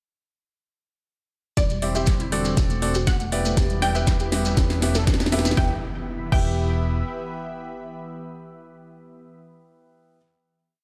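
Progressive house at 120 BPM in E minor, driving and expansive, with a straight four-on-the-floor electronic kick that sits deep and up front, joined by a house drum kit of cracking snare, metallic hats, rim clicks and crash, both in studio reverb. Most parts enter at 1.6 seconds as a build-up and drum fill, with a very quiet, gritty sampler-style breakbeat loop from a small room and a grainy, hand-played shekere in sixteenths adding texture, while a punchy, funky analog bass holds a sustained E1 root under sidechain pumping. The lead is a detuned sawtooth unison pluck playing a repeating riff with delay, doubled very quietly in unison by a crystalline wavetable pluck. Beneath it, a soft, round pluck in the background spins a sixteenth-note riff over a pedal note with ensemble chorus and delay. From 1.8 seconds a clear grand piano punches off-beat stabs through a low-pass filter, and from 2.2 seconds a thick, detuned pad swells in slowly with chorus and phaser. 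The chords move from Cadd9/E through D7/E and G6/E to Em. From 3.7 seconds, very quiet riser and impact effects carry the piece into a final chord at 5.6 seconds that rings out to the end at 10.2 seconds.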